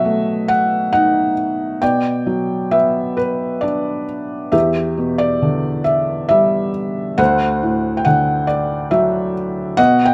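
Melancholic and reflective, this short excerpt from a longer piece is lyrical solo classical piano in 3/4, moving at around 68 BPM with a loose, rubato feel. The only instrument is a felt-muted upright piano, heard alone from 0.0 to 10.1 seconds and ranging from D2 up to G5. Its tone is soft, mellow and intimate, and the audible action noise adds a natural, close-up texture. The harmony moves from B7 through Gmaj7/B and Em7 to D7, and the tuning sits slightly above standard at A4 = 441 Hz. Close, detailed microphones place the piano up front, with light reverb giving a touch of space.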